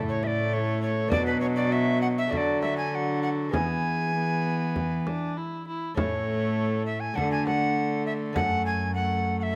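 Lute, a warm, lightly vibrato viola and a rich, reedy bowed cello open together at 0.0 seconds, joined almost at once by a bright, airy alto recorder with crisp chiff carrying the melody up front and a deep frame drum played with soft hands from 0.2 seconds, in a courtly, stately renaissance-style consort dance in A major at 100 BPM, where the delicate fingerpicked lute sits in the background, the gut-string tone of the period-style strings comes through close, detailed microphones with light reverb, and the drum stops at 8.6 seconds while the others play on in this excerpt cut from a longer piece.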